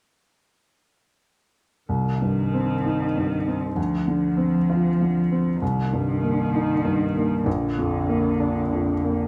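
A clear, woody upright piano with audible action noise and long sustain carries the accompaniment in this fragile, longing neoclassical fragment in C minor, taken from a longer piece and tuned to A4 = 436 Hz, moving in a rubato 3/4 around 97 BPM over Cm, Dm7, Cm7 and Bb from 1.9 s, while a single bowed cello, rich yet distant, sings an expressive second line with vibrato and portamento, both played live in one room with a moderate large-studio reverb.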